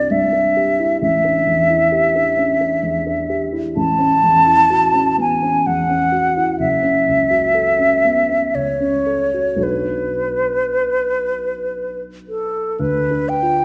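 Mysterious and hazy, this impressionist classical duo drifts in a rubato 3/4 at 54-67 BPM in B minor, cut from a longer piece. An airy, mellow silver concert flute carries the melody up front with expressive vibrato and a soft attack, while a dark grand piano with short sustain supplies the accompaniment, spanning F#1 to B4. The chords move through colors like Cadd9, F#m7 and Bm7 before landing on Dm6 at 12.8 seconds, all set in a moderate concert hall reverb.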